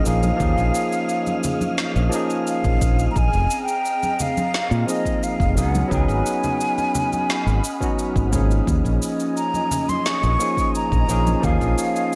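A straight 4/4 groove from a punchy, layered electronic kick, a woody electronic cabasa and snare with a tape-tinged large-room sound, and ringing acoustic congas carries this blissful sunset chillout excerpt over suspended ninth chords. A bright fingered electric bass with tube saturation sits up front beside a clean, barky tine electric piano, filtered and touched with tape echo, while a breathy, hollow silver concert flute sings the melody with vibrato and its own tape echo. Behind them, a soft, detuned pad with chorus and a wind-like tuned noise texture bathed in its built-in reverb drift quietly in the background, all within light reverb.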